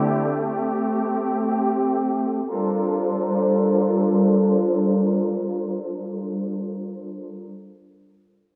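Floating in free time, this short amapiano fragment, cut from a longer piece, carries a late-night, soulful mood in G minor, tuned to A4 = 441 Hz. A clear, up-front studio string section holds sustained, bowed chords with vibrato from 0.0 to 7.5 seconds, spanning D3 to C5 under a low-pass filter. A filter sweep shapes the strings through the opening 2.5 seconds while the harmony arrives on Am7 at 0.4 seconds. At 2.5 seconds the music moves to a second passage and settles onto Gm11. The sound is bathed in a lush hall reverb with a 2.5-second decay and carries the worn, warbling pitch drift of old cassette tape.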